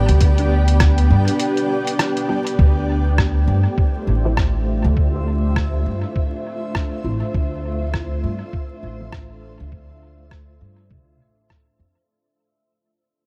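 Vinyl crackle and light reverb frame this spacious, meditative ambient dub excerpt, taken from a longer piece, with a swung 4/4 feel. A woody, pizzicato upright bass sits up front over a thumpy, pitched-down electronic kick, while a muffled lo-fi sampler-style kit adds hi-hat and rim click through dub echo, all beneath a blurred, evolving granular cloud pad. A mellow, bubbling stepped-filter texture stays in the background until 2.6 seconds, when the harmony moves from G to Dm9 and the music begins fading out, and a very quiet, phased chord stab with a filter pluck is heard from 2.3 to 9.2 seconds.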